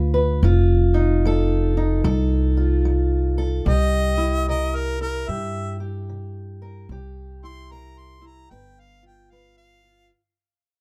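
A clear harmonica enters at 3.7 seconds with a light vibrato, soft attack and scooped notes, playing a jazz-style solo up front in this short cut from a gritty, rollicking acoustic country blues with a swung feel. Beneath it, a dark, boxy fingerpicked steel-string acoustic guitar in parlour style and a woody pizzicato upright bass play from the start, moving through F7, C7 and G7. The recording is dry and close, with a fade-out running through the whole passage.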